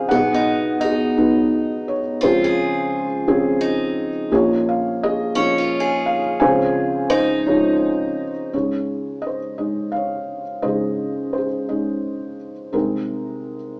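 This acoustic folk-pop ballad in Db major moves at a slow 57 BPM in a straight 6/8, with an intimate, nostalgic mood. A felt-muted upright piano carries the melody throughout, its thick-felted tone soft, dark and mellow, with the hammers' action noise audible up close. Beside it, a picked steel-string parlour guitar plays bright, boxy arpeggios in a narrow upper-middle range, sitting up front until it stops at 8.5 s. From there the piano continues by itself into a new section that runs to 13.8 s. The harmony drifts from Cb6 through Dbmaj7 and Bbm7, then on to Dbsus2 and Abadd9/C. A moderate studio reverb places the players together in one large room, yet the overall sound has a small-speaker quality, and the clip is cut from a longer piece.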